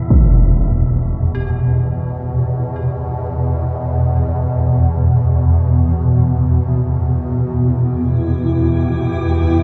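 A swarming, nasal drone sits up front in the low register, its detuned, granular tone slowly evolving beneath this desolate, cavernous dark ambient fragment in free time and E minor. In the background, an eerie, inharmonic FM bell plays arpeggios around G4 with chorus, tremolo and delay, fading in across the whole passage. A breathy, wind-like noise texture flickers briefly at the very start and returns at 8.2 seconds, when a blurred, cloudy granular pad holding sustained chords joins the drone, all bathed in a wet cathedral reverb.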